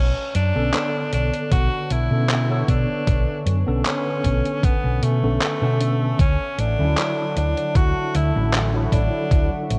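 Hazy and woozy, this vaporwave excerpt drifts at 77 BPM in B dorian with a light swing on the sixteenths, cut from a longer piece. A bright tenor saxophone carries the melody in a jazz style with vibrato, its line trailing tape echo, while a round, dark hollow-body electric bass sits up front from the very start. A clean tine electric piano enters at 0.5 seconds, its analog chorus adding shimmer, and a warbling, detuned pad of square and triangle tones fades in with a slow attack at 1.3 seconds, nostalgic and lo-fi in the background. The rhythm comes from a detuned 8-bit drum machine playing handclaps and hi-hat under gated reverb, joined at 1.5 seconds by a thumpy, sampler-style electronic kick. The harmony rests on Bm9 before shifting to Dmaj9 at 6.2 seconds, all wrapped in a cassette-tape sound with light reverb.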